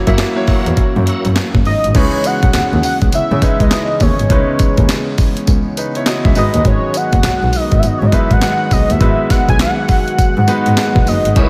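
Slick and punchy, this new jack swing R&B excerpt rides on a gritty, compressed breakbeat sampler-style kit up front, with a thumpy kick, medium-tuned snare, handclaps, hi-hat, tambourine and crash cymbal, over a rich, bowed double bass with smooth vibrato. A clear, polished baby grand piano with slapback echo and a mellow, detuned analog pad with chorus carry the chords from F#7 through C#m9 to G#m7, while a tonewheel organ with fast rotary speaker adds background stabs at the start and again briefly at the very end. A thick, dark unison lead with sub octave, moving notch and vibrato takes the melody from 1.7 seconds, all set in light reverb.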